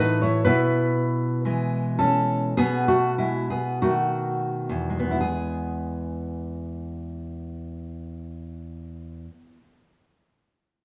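Romantic solo classical guitar in E major, this nostalgic, tender fragment of a longer piece drifts with rubato between 42 and 63 BPM in 4/4, its dark, full-bodied fingerpicked nylon-string guitar sitting up front from E2 to C#5, slowing over the opening 5.2 seconds through E/B and B7 before settling on E, and bathed in a moderate recital-hall reverb until it stops at 9.8 seconds.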